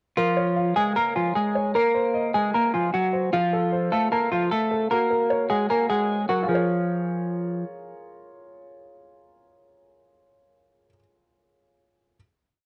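A clean, fingered semi-hollow electric guitar sits up front with a looping melody doubled in octaves, repeated like a sampled loop, from 0.2 to 7.6 seconds. This is a dark, menacing trap-flavoured hip hop piece in Bb minor at 152 BPM in 4/4, moving with a half-time feel. Beneath it, a mellow baby grand piano plays a rising and falling arpeggio in eighths, also looped, carrying on until 12.2 seconds. The piece opens with a breakdown over Bbm7, Abadd9, F and Gbadd9 before settling on a final Bbm7 chord at 6.5 seconds. Both parts carry a cassette tape colour, and the home recording on cassette has a moderate booth ambience.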